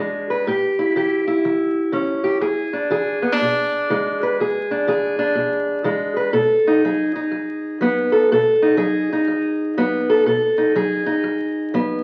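A fingerpicked steel-string acoustic guitar opens this gritty, soulful blues fragment and carries it alone for its full 12 seconds. The parlour-style instrument sounds dark and boxy, sitting up front in the mix, and it ranges from low bass notes up into its middle register. The playing has a loping swing on the eighth notes in a steady four, moving from A7 to E7 at 2.4 seconds and on to B7 at 6.3 seconds. A moderate reverb from a large studio gives the guitar some air around it. Over the top lies the crackle and age of a very old 78 rpm record, lending the whole piece a worn, vintage character.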